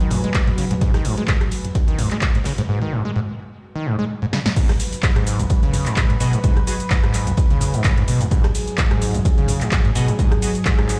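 Heard through a big sound system in a bare room with a large studio reverb, this raw, hypnotic acid house excerpt runs at 128 BPM in 4/4 with a light swing on the sixteenths, sitting in G# minor over a G#m7 chord. An overdriven acid bass drives it up front with a squelchy, gritty, resonant sawtooth riff of distorted filter plucks, touched with subtle chorus, tape echo and sidechain pumping. Beneath it, a smooth analog pad holds sawtooth chords with chorus and pumping, while a deep, moody ambient pad of detuned, wave-folded unison tones hovers in the background until 2.7 s. A punchy electronic kick re-recorded in a small room anchors the beat alongside an electro analog drum machine with metallic hats, tape-flavoured handclaps, rim clicks, shaker, toms, crash and a punchy snare, plus a very quiet gated 80s kit adding airy ride cymbal and fat snare. After a break and a drum fill, the drop lands at 4.6 s, and at 6.2 s and again at 10.0 s a nasal, band-passed chord stab cuts through with a bright, detuned filter sweep, phaser and tape echo.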